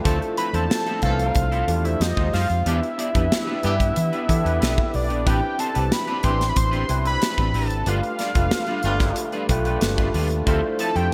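An overdriven tine electric piano opens this short clip of polished 1980s jazz-funk pop, its bright, barky, gritty tone run through a combo amp and an ensemble chorus, while an electric guitar at the edge of break-up plays a twangy, fingered riff through analog chorus. Almost at once a dark, round, foam-muted fingered bass and a punchy, up-front studio drum kit settle into a straight groove, the medium-tuned snare and kick carrying a gated reverb in an airy room. From 0.4 seconds a fat analog lead carries the melody high above, a detuned sawtooth-and-square sound with a sub octave, wave-folded edges, a fast attack and mellow, sustained vibrato. A distant horn section with light vibrato plays a soft second line in the background until 10.6 seconds. The harmony moves through Dm9, Fm7, Em7, Am11 and G7 before returning to Dm9, giving a bittersweet, nocturnal mood. The bright digital production adds light studio reverb to the whole.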